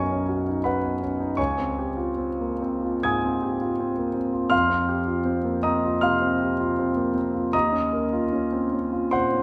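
The pulse moves freely in rubato, a 4/4 metre drifting between 66 and 82 BPM. This is impressionist classical solo piano, hazy and serene, cut from a longer piece. A concert grand plays alone from 0.0 to 9.4 seconds, ranging from B1 to Ab6, its tone intimate and polished, with deep bass, long sustain and the sound of the action audible up close. The harmony moves through colourful chords: Badd9 at the opening, Dbmaj7#11 at 1.4 seconds, then Fsus2 and Ebsus2. A moderate concert hall reverb surrounds the up-front, present piano, adding a gentle glow to its calm mood.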